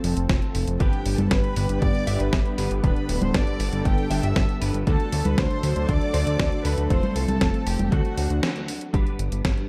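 Playful and romantic, this italo disco excerpt rides a straight 4/4 groove built on a fat, detuned sawtooth analog bass sitting up front, an overdriven, punchy electronic kick entering at 0.3 seconds, and a tape-tinged 12-bit drum machine supplying congas, hi-hat and a fat snare. A lush, chorused unison pad holds sustained chords while an intimate chamber violin section, bowed sul tasto with vibrato and tape echo, carries the melody from 0.8 seconds, joined by clean, compressed, direct-recorded electric guitar stabs with ensemble chorus tucked in the background. The dark production with light reverb closes on a brief break and band accent at 8.4 seconds.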